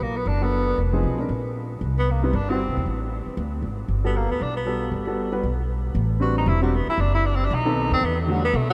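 A clear tenor saxophone carries the solo melody with vibrato and scooped notes, sounding roomy and distant yet up front, over a woody pizzicato upright bass on steel strings and a warm, natural baby grand piano that enters at 0.4 s, in a playful small-group swing and bop fragment bathed in huge reverb from a vast, echoing space, with a break at 5.7 s before the second section begins at 6.0 s.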